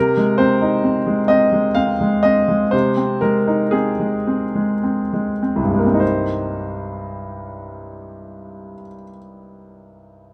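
Rubato in 3/4, the pulse drifts between 50 and 68 BPM and slows through the first 6.0 seconds, giving this brief neoclassical minimalist piano fragment a hesitant, breathing feel. A solo grand piano carries the whole passage from 0.0 to 10.3 seconds, ranging from C2 to F5 in C minor. Its tone is clear and somewhat boxy, with short sustain, and it sits up front in a light reverb. The harmony rests on Ab/C before settling onto Cm7 at 6.0 seconds, where a second section begins. The mood is melancholic and wistful, like a quiet moment lifted from a longer piece.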